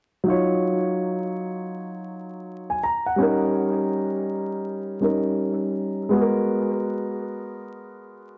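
Cool and mellow, this short hip hop excerpt moves at 82 BPM in 4/4 with a swung sixteenth-note feel, set in E-flat minor. A dark baby grand piano plays alone from 0.2 to 8.4 seconds, sitting up front in the mix with a dusky, mellow tone and an analog delay trailing its notes. Its harmony moves from Ebm9 to Eb7 at 3.2 seconds and on to Abm9 at 6.1 seconds, spanning a range from Gb3 up to Bb5. The overall sound is echo-heavy, with a moderate echo chamber reverb lending a sense of space and a layer of vinyl crackle adding a worn, nostalgic texture. Cut from a longer piece, it holds a cool, mellow mood throughout.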